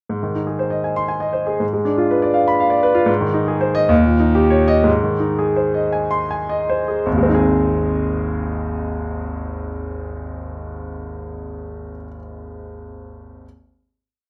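Hopeful and lyrical, this brief romantic character piece for solo piano in Ab major moves in a rubato 6/8 at 51-86 BPM, its clear concert grand sitting up front with natural tone, deep bass and sweeping arpeggios across Ab, Abdim7 and Eb7 harmonies, slowing from 2.4 to 7.1 seconds before settling on a final chord held until 11.3 seconds within a moderate large-studio reverb.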